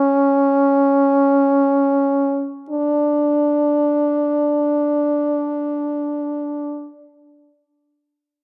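In free time with a slowing pace over the opening 2.7 seconds, this fragment of a longer classical piece unfolds in an expressive, lonely and yearning mood. A single French horn carries everything as an unaccompanied solo, sitting up front with a clear tone and a light vibrato in a classical style. Its line stays between C#4 and D4, and the music moves into a new section at 2.7 seconds before the horn stops at 6.9 seconds. A moderate recital hall reverb surrounds the instrument, and the overall production has a dark character.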